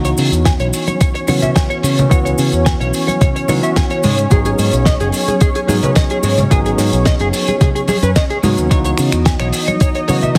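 Sensual and cosmic, this nu-disco excerpt moves at 109 BPM in a straight 4/4, cycling from C#m11 to G#m7 and back. A thumpy, overdriven electronic kick sits up front from 0.5 s, alongside a dry 70s drum kit with a fat snare, finger snaps and hi-hat that is present from the start, plus compressed, saturated maracas and congas played with soft hands, while a punchy picked bass with an envelope filter drives the low end. Above them, a bell-like tine electric piano with tape echo, a twangy, slightly broken-up guitar riff with subtle chorus, and a lush, detuned sawtooth pad pumping under sidechain fill out a heavily compressed, radio-style mix with moderate plate reverb.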